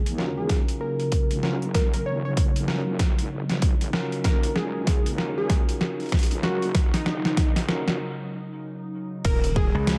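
A punchy, overdriven electronic kick sits up front in this swaggering, playful glitch hop excerpt at 96 BPM in Eb minor, joined by a gritty, pitched-down boom bap sampler kit of snare, rim click, hi-hat and crash that runs a drum fill through a build-up. A catchy, detuned plucky unison lead carries the melody with dub echo, while a wobbling sawtooth bass rumbles in the background, a warbling, nostalgic tape-like pad holds sustained chords with phaser and sidechain pumping, and a bell-like tine electric piano adds filter-swept stabs through a lo-fi 12-bit grit. After a break at 8.0 seconds, a bright, overdriven slap bass bursts in at 9.7 seconds, all in an echo-heavy mix with springy reverb.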